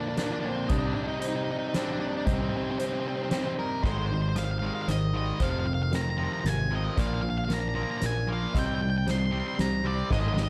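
An octave-fuzz lead guitar carries a dark, up-front melody over felt-muted upright piano arpeggios, clean twangy electric guitar arpeggios and a picked distorted guitar riff, all touched by slapback echo except the riff, in a cinematic, melancholic post-rock passage in C minor at 115 BPM in 3/4. A soft-mallet drum kit with dark cymbals and a fat snare comes in at 0.2 seconds, and a growling overdriven fingered bass follows at 0.7 seconds. From 3.8 seconds a second, overdriven guitar riff takes over as a drum fill runs alongside a build-up through Abmaj7, F7sus4, Bb and Cm, with the first riff returning briefly at 10.1 seconds, all in a small room with a dark, warm production.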